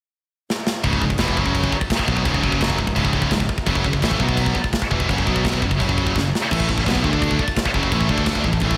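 A tight metal drum kit of kick, snare and crash bursts in at 0.5 seconds with a fill before a heavy, aggressive heavy metal riff takes hold at 170 BPM in C# Phrygian, driven by an up-front, bright high-gain guitar with slapback echo, a growly picked electric bass and a scooped high-gain guitar in the background, all set in a lush hall reverb that gives a big arena sound, with another drum fill at 6.1 seconds as the chords shift from F#5 and B5 to A5 and D5 in this excerpt from a longer piece.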